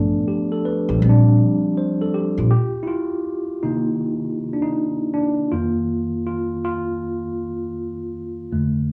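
This lo-fi hip hop excerpt, cut from a longer piece, moves at 80 BPM in 4/4 with a lazy swing on the 16ths and a melancholic, nostalgic mood in C dorian. A mellow tine electric piano carries the accompaniment throughout, its worn, slightly out-of-tune tone sitting clean and up front across a range from F2 to C5. For the opening 2.5 seconds an acoustic upright bass joins it, playing woody, thumpy pizzicato on gut strings low in its register between A1 and B1. From that point the electric piano takes a solo until the close at 8.9 seconds. The harmony passes from G7 to Bb69, then settles on Cm7 before shifting to F7sus4 at 5.5 seconds. A moderate small-room reverb gives the close, direct sound a little air.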